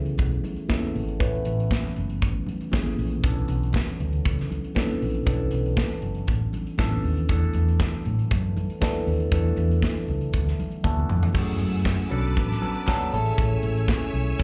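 A barky, lightly overdriven tine electric piano comps through this danceable, glamorous disco groove, its chords run through phaser and slapback echo over a dark, round hollow-body bass, a polished drum kit with a tight kick, and very quiet high-tuned congas. After a short piano and drum fill, a lush, bright bowed string section enters at 11.3 seconds with intense vibrato, and crisp vintage handclaps join faintly at 11.9 seconds. The piece, cut from a longer one, sounds like a live gig heard through the venue's PA, carrying a touch of club reverb.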